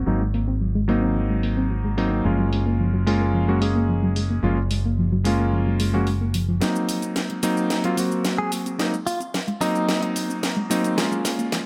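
Nu-disco at 110 BPM in Ab mixolydian with a sunny, feel-good mood, where a vintage, clangy electric grand piano with delay and a bright, envelope-filtered fingered bass sit up front over a filter sweep, a soft, round pluck with chorus and delay ripples arpeggios in the background, and a layered house drum kit with a cracking snare and shaker drives things along; the bass drops out at 6.6 seconds as a build-up and drum fill begin, and a twangy, clean electric guitar with spring reverb briefly plays the melody from 8.4 seconds.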